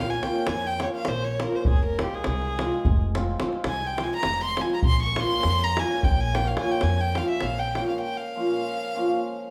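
In a driving 11/8, this fiery, virtuosic Balkan wedding-band excerpt puts a close, up-front violin soloist with light vibrato and an airy sul tasto bow over shimmering hammered cimbalom, woody, growly pizzicato upright bass and tight davul, all playing live in a reverberant large room, until the bass and davul drop out just before a break at 8.0 seconds.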